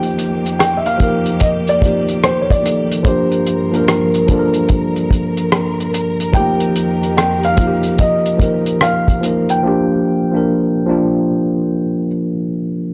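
A hazy, reflective lo-fi hip hop cut opens with all four parts together: a felt-muted upright piano carrying the melody between Bb4 and G5, a mellow tine electric piano accompanying below, lush bowed strings holding sustained chords, and a cloth-damped drum kit of kick, hi-hat and rim click. The groove sits at 73 BPM in 4/4 with a lazy swung sixteenth feel, moving in G minor between F9sus4 and Gm7, with the tuning settled a touch below standard pitch. The electric piano sounds worn and slightly out of tune, run through cassette tape and a low-pass filter, and sits up front, while the upright piano is soft and intimate, its thick felt giving it a muffled, filtered tone. The string section adds a clear, vibrato-laden ensemble sheen under its own low-pass filter, and the drums stay dry and dark with a tight kick and a rolled-off top. Strings and drums drop out at 9.6 seconds, leaving the two pianos over the returning Gm7 until the upright stops at 12.1 seconds and the electric piano closes this fragment of a longer piece at 12.9 seconds, all within a gritty, tape-tinged recording touched by studio reverb.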